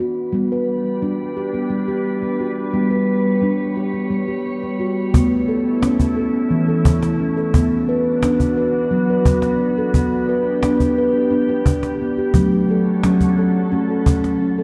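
A dark, warm mix bathed in a wet, spacious reverb carries this hypnotic, meditative world piece in 7/8, cut from a longer work. An up-front steel tongue drum opens alone with round, ringing arpeggios through diffuse delay and shimmer reverb, and a glassy, ethereal FM pad slides in beneath it at 0.8 seconds with slow-blooming sustained chords, chorused and shimmering. At 5.1 seconds a close, snappy cajon played with soft hands joins, grounding the drifting harmony as the chords move from A through B minor to F-sharp minor.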